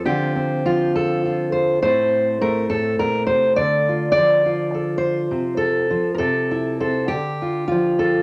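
Folk fingerstyle in a rubato 6/8, this gentle eight-second excerpt features a lone fingerpicked steel-string jumbo acoustic guitar, full-bodied and up front, drifting through Dm7, Am, Dm, F/C and C before settling back on Dm inside a moderate large studio reverb.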